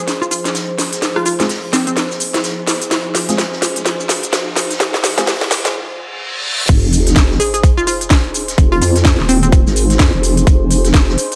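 A nasal, saturated wobble bass with a vowel-like formant sweep drives the drop from 6.7 seconds, landing alongside a tight electronic kick in this bouncy, swaggering bass house excerpt with a swung sixteenth-note feel. Before it, a hollow, detuned square-wave pluck carries the melody and dark, boxy baby grand stabs move through a filter sweep over a breathy, pumping pad, while a riser builds toward the break, where a reverse cymbal leads into the drop. Crisp, cracking garage drums sit up front throughout, with a distant, roomy acoustic kit faintly behind them and a sub drop and impact marking the arrival of the drop.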